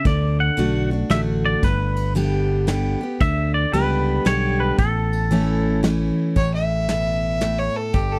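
A twangy electric guitar carries the melody in this short, heartfelt and sunny honky-tonk passage, its bright, clean, compressed tone sitting up front until about 5.8 seconds. It moves in a swinging three-beat lilt over a full-bodied steel-string acoustic guitar, picked in a dreadnought's ringing voice, and a round, fingered electric bass that stays close and direct. A soft brush kit keeps time with a punchy kick, a medium-tuned snare and ride cymbal, sounding like a small room. At 6.4 seconds a clear fiddle takes a brief solo over the chords, its bowed, earthy tone carrying a light vibrato while sounding distant. The whole cut has a dry, close, 1970s-style studio sound, and it is lifted from a longer piece.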